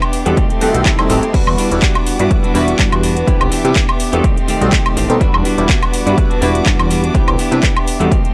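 An up-front, punchy, overdriven electronic kick drives this sensual, groovy filtered disco house excerpt in E minor at 124 BPM with a light 16th-note swing, alongside a house drum kit of metallic hats, handclaps, woodblock and crash, a funky sawtooth polysynth comp with chorus and phaser, a plucky ring-modulated analog bass, a clean picked electric guitar riff and a background violin section of bowed chords with vibrato and portamento, all pumping against the kick except the kick itself, while a brief electronic swell appears at 0.5 seconds over chords moving through B7b9b13, Em9 and Cmaj9 in a dry, gritty recording colored by transformer saturation and cassette tape.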